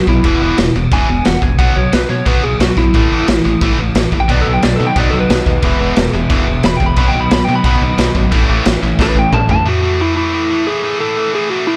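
Punk rock, energetic and upbeat, cut from a longer piece and driven by a fast, straight four-beat pulse. A bright, twangy lead guitar, slightly broken-up and compressed with a tape echo, carries a soloing melody from the start, while two tight, distorted rhythm guitars pick out riffs in the background. A round, woody fretless bass with a hollow, punchy tone anchors the low end, and a raw garage drum kit sits up front with a punchy kick, medium-tuned snare, toms, and dark crash cymbals, its gritty, saturated sound carrying a pumping small-room character. At 4.3 seconds a double-tracked overdriven guitar joins with another riff in the background. A drum fill leads into a brief closing passage at 9.7 seconds, where the lead and one distorted guitar continue alone, all under a light reverb.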